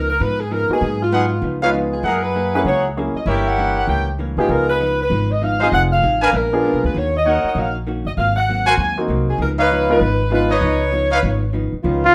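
Big band swing jazz in Db mixolydian at a brisk 196 BPM, this energetic, brassy passage cut from a longer piece sets a vibrato-rich saxophone section melody over a woody pizzicato upright bass, a dark hollow-body electric guitar and a smooth vintage grand piano, with a tight, close-miked trumpet section adding clear stabs from 1.1 seconds, a distant, roomy saxophone section sustaining chords near the end and a present solo trumpet note landing at 12.1 seconds, all in a rough demo-style mix with plate reverb on the saxophone melody, guitar, piano and trumpet stabs.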